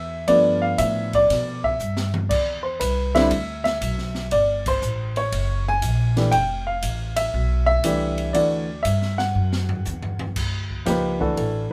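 A baby grand piano with audible action noise and a pizzicato upright bass open this relaxed jazz trio fragment in G major, swinging at 119 BPM, with the drum kit joining at 0.3 s. The intimate, up-front piano carries the melody over a woody, thumpy gut-string bass, while the acoustic drums bring dark cymbals, a high-tuned snare and a boomy kick, adding fills and joining a band accent at 4.6 s. Light reverb surrounds the trio, and the piano's natural, short-sustained tone takes a brief solo from 10.4 s.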